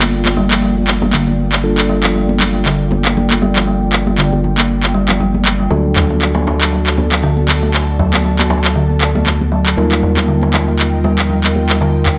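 Swung sixteenths drive this hypnotic afro house excerpt, where overdriven electronic handclaps sit up front over a round, dark analog bass, bright close congas and a woody kalimba arpeggio through tape echo and a low-pass filter, while a mellow tine electric piano stabs in the background and an ethereal, airy pad with ensemble chorus holds chords under a filter sweep, with a deep clay-shelled darbuka and a grainy egg shaker joining at 5.7 seconds as the harmony moves from Gm7 to D and Ebadd9.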